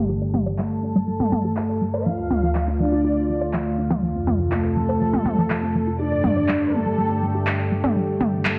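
A bright, evolving sawtooth pad opens this melodic techno excerpt, holding sustained chords up front with a soft attack and long release, while a filter sweep moves through it and the chords turn from Gsus2 to Dm, F and back to Gsus2. Almost at once a warbly, dusty pluck joins in the background, its detuned, lo-fi arpeggios decaying into cassette-tape wobble and dub echo. By 0.3 s a layered, tape-warmed house drum kit with handclaps and toms drives a straight 4/4 at 122 BPM up front, its snare, hats and toms softened by low-pass filtering and studio reverb. At 0.6 s a smooth, expressive synth lead carries the melody with vibrato, lush chorus and tape echo, joined by a dark, woody violin section playing a bowed second line higher up through filtering and dub echo. The mood is dramatic and melancholic, set in a lush hall reverb under a dense, heavily limited modern master, with filter sweeps running across the drums, lead, strings and pad throughout.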